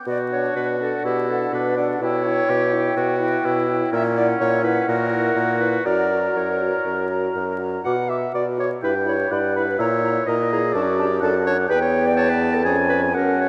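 Drenched in the long echo of a vast cathedral and dusted with vinyl crackle, this spirited, graceful classical-period wind quintet movement in B minor moves at a quick 124 BPM with a rubato feel: the hollow, close-miked flute carries the tongued melody with vibrato over a clear oboe second line, a warm clarinet and a distant, roomy French horn fill out the accompaniment, and an up-front bassoon with vibrato anchors the bass.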